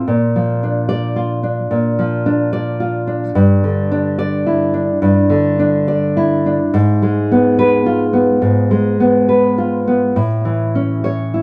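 Romantic solo classical guitar in 4/4 at about 71 BPM, tender and nostalgic, with rubato and uneven beats: a warm, up-front nylon-string guitar with fresh strings, thumb-plucked between G2 and D5, moves through Bb, Em7/G, G#m6 and A in a dry, close 1970s-style studio sound across this 11.4-second excerpt cut from a longer piece.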